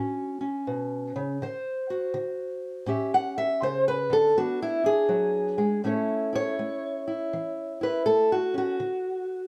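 A moderate studio reverb surrounds a single fingerpicked, ladder-braced acoustic guitar, placed up front, whose dark, boxy, woody tone and old strings give this short acoustic country blues fragment a gritty, swaggering character. At 81 BPM in 4/4 with a swung eighth-note feel in A mixolydian, the guitar plays alone throughout, spanning A2 to F#5 as it moves through A, D7, A7 and E7 before the phrase begins again at 5.8 seconds and reaches D at 8.8 seconds.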